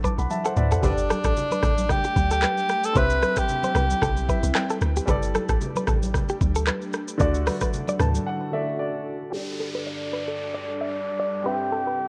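The excerpt opens with a polished grand piano fill over a clean, compressed electric guitar riff with delay, a deep, round log drum bass, an up-front electronic afro-pop kit with a knocking kick, smooth hats, handclaps, rim clicks, shaker and toms, and bright, saturated congas sitting in the background. This sunny, romantic afrobeats groove has a light sixteenth-note swing and moves through D, Gsus2 and Cmaj7 chords. At 0.9 seconds a solo alto saxophone with delay carries a pop-style melody in its middle range, and from 1.9 seconds an ethereal, airy pad with ensemble chorus and built-in reverb settles in beneath. The drums, congas and bass drop away at 8.3 seconds for a break filled by the piano. From 9.3 seconds the saxophone returns alongside an electronic downlifter and a filter sweep, all coloured by a dry mix with the worn, warbling pitch drift of old cassette tape.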